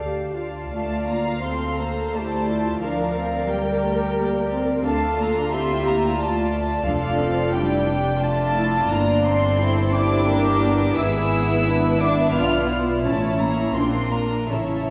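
The recording sits in a wet scoring-stage reverb with a 1.6-second decay, heard from further back in the room with a softened, rounded top. This slow, romantic classical movement for string orchestra moves at 88 BPM in a rubato 3/4 in D minor, and its mood is serene and lyrical. A bowed violin section carries the floating, pure melody, while a second violin section plays a close, soft-edged line beneath it. A dark, woody viola section adds lush accompaniment with vibrato, and a double bass section grounds the bass. The cello section joins the bass at 0.7 seconds with a rich tone, and all the strings are played sul tasto. The harmony drifts from Dm through Gm/D, Em7b5/G and G#dim7 before reaching A and then Bb as this cut from a longer piece closes at 14.9 seconds.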